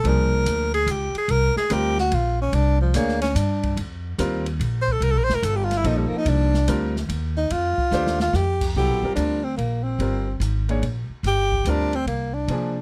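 A swung three-beat modal jazz groove feels hypnotic and intense as a warm, lightly vibratoed tenor saxophone solos up front with scooped notes until 8.8 seconds, over woody, thumpy pizzicato upright bass, a clear baby grand piano accompanying on suspended ninth chords, and an airy acoustic drum kit with dark cymbals and a boomy kick that plays a short fill at 7.9 seconds, all captured close and dry in this brief excerpt.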